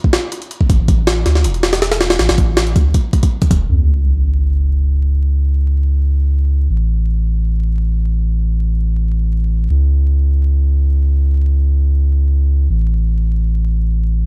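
A deep, round dub sub bass with tube saturation carries this raw, atmospheric drum and bass and jungle piece in free time, entering at 0.7 seconds with a soft, sustained triangle-and-square tone between E1 and D2. Up front at the opening, a compressed, pitched-up, gritty sampler-style jungle kit (thumpy kick, high-tuned snare and hi-hat, re-recorded in a large room) plays until 3.6 seconds, and an electronic sub drop lands as a background impact at 3.7 seconds. The dry hardware recording carries vinyl crackle throughout.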